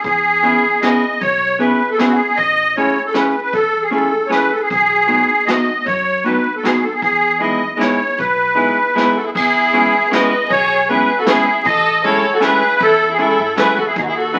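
A reedy, shimmering musette accordion sits up front and carries the melody through this nostalgic, whirling musette waltz in three. Close behind it, a clean, picked hollow-body electric guitar with a vintage tone supplies the accompaniment from 0.4 s, moving through E6, Amaj7, B7 and Emaj7 before the progression starts over. A pizzicato upright bass with steel strings gives a woody, low foundation. A distant jazz kit played with brushes adds a gentle lilt, with its boomy kick, medium-tuned snare, hi-hat and dark crash sounding roomy and rolled-off. At 9.2 s, as the phrase repeats, a single bowed violin enters with a dusky second line, smooth on top and touched with vibrato. The whole excerpt is bathed in wet studio reverb and the crackle of a very old 78 rpm record, and it is cut from a longer piece.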